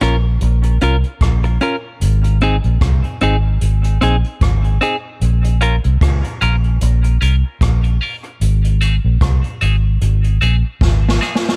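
A dark, round, foam-muted vintage electric bass sits up front in this heavy, deep dub reggae excerpt at 75 BPM with a 16th-note swing, joined by a roomy, boomy-kicked brush drum kit and a clean, picked electric guitar treated with dub echo and high-pass filtering, which undergoes a filter sweep from 2.0 seconds over a Bbm and Ab progression in a small room before a drum fill starting at 10.8 seconds closes the excerpt.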